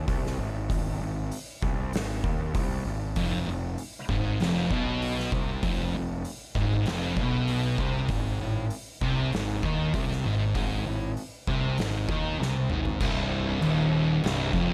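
A straight 4/4 pulse anchors this brooding, hypnotic stretch of stoner and doom metal, cut from a longer piece. A fuzz-drenched electric bass opens the recording up front, its bright, growly, overdriven tone sitting low in the register, and an oversized, low-tuned acoustic drum kit joins almost immediately with a punchy kick, a medium-tuned snare, hi-hat, toms and crash cymbal, its sound dark, smooth and saturated with a gritty edge. At 3.2 seconds two thick fuzz guitars come in on the riff, one of them set further back in the mix, both distorted, picked and warm. The harmony moves from Ab to F5 and back to Ab before a drum fill at 12.4 seconds carries the music into a new passage on C minor at 13.0 seconds. The production is close and dry, with little reverb, keeping the dense low end heavy and immediate.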